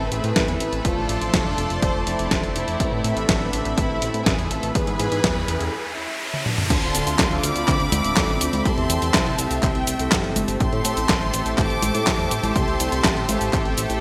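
A rich, smooth studio violin section carries the melody from the first moment, bowed with vibrato and touched by digital delay, over a lush, thick unison pad with a warbling chorus, mellow background synth brass stabs, and a glossy, chorused pulse-wave bass. This is a danceable, nostalgic italo disco passage, cut from a longer piece, moving at 123 BPM in a straight 4/4 in A harmonic minor, tuned slightly below standard pitch at A4 = 437 Hz. A tape-warm 12-bit drum machine sits up front with a medium-tuned snare, handclaps, hi-hat, congas, cabasa, toms and crash cymbal wrapped in gated reverb, while a punchy, overdriven electronic kick enters at 0.4 seconds. The opening harmony cycles through Amadd9, F6, E and Bmadd9, and a faint electronic riser from 4.5 seconds, together with a drum fill, leads into a new section at 6.7 seconds. There the key settles into A minor over Dm7, C6 and Am7. 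A moderate hall reverb and bright 1980s-style digital production give the whole passage a spacious, polished sheen.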